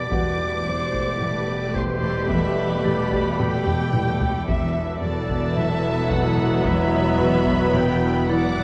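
A close-miked solo clarinet features in this uneasy, tense suspense film-score excerpt, weaving a second line beneath a soft-edged, expressive violin melody and a lush second violin part, while violas, a studio cello section and a distant double bass section hold the low strings, quiet cellos carry a bowed riff, mellow French horns and roomy trombones sustain faint chords, a glassy, drifting harmonics texture with chorus and built-in reverb shimmers behind, a felt-muted upright piano with audible action noise adds intimate texture until 4.5 s, when very quiet high violins take over that role, and dry, heavy-stick taiko drums sit in the background with a fill at 3.4 s, all in a concert hall ambience colored by worn, warbling cassette tape.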